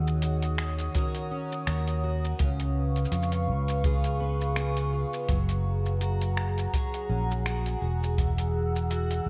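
Folktronica in F# major at 83 BPM with a gentle 16th-note swing, this warm, hopeful excerpt pairs a bright, shimmering twelve-string acoustic guitar picking octave-doubled arpeggios through lush chorus and diffuse ambient delay with a warbling, nostalgic tape-like pad of detuned sustained chords, over a dark, round, up-front fingered electric bass with tube saturation, muffled pitched-down sampler snaps, hi-hat and shaker, and a boomy kick that enters at 1.0 seconds, moving through D#m7, C#7, F#add9 and Eadd9.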